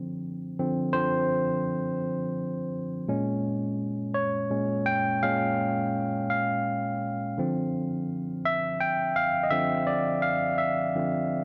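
A barky, lightly overdriven tine electric piano played through a combo amp sits up front and plays alone for the whole 11.4 seconds of this late-night, yearning R&B fragment in a straight 6/8, moving from Dm7 to Bbm7 at 3.1 seconds and settling on Dm9 at 7.4 seconds, all bathed in a moderate, long-tailed plate reverb.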